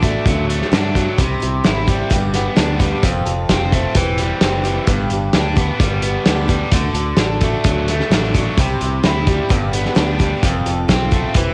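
Folk rock and heartland rock with an open-road, nostalgic mood at 130 BPM in G major, this excerpt cut from a longer piece sets a loose indie drum kit with a fat snare, tight kick and muffled, rolled-off top up front alongside a double-tracked overdriven electric guitar riff with spring reverb, a fingered electric bass played direct, and a bright, boxy picked swing-style acoustic guitar with audible finger squeak, all through a light-reverb home cassette sound that moves through chords such as D, C, G and F.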